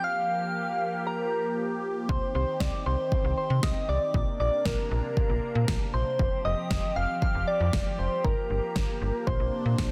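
A soft, round synth lead carries the melody from the first moment, its gentle, keys-like tone touched with chorus. Beneath it, a swirling phased analog pad of detuned sawtooth voices holds sustained chords with a slow attack and long release. At 2.1 seconds a slap-like FM bass and a deep house drum kit arrive together. The bass has a snappy, metallic attack that decays into a mellow tail, while the layered electronic kit pairs a deep kick with a fat, tape-tinged snare. This nocturnal, melancholic synth-pop passage, cut from a longer piece, moves through Gm7, Cm, Bbadd9 and Fsus2 in a steady, straight four. The lead, bass and drums sit up front, the bright pad shimmers behind them in a lush hall reverb, and a dense, heavily limited master gives the whole a modern, polished finish.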